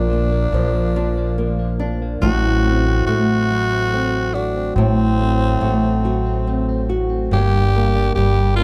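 A slow, steady 6/8 pulse at 47 BPM carries this tender, romantic pop excerpt, where a breathy, raspy tenor saxophone with light vibrato sings the melody up front over fingerpicked flamenco guitar with audible finger squeak, a bright, compressed clean electric guitar playing arpeggios in the background, and a woody, growly pizzicato upright bass, all captured in a dry, close 1970s-style studio sound as the chords move from Bb to Am6 at 2.2 seconds and Gm at 7.3 seconds.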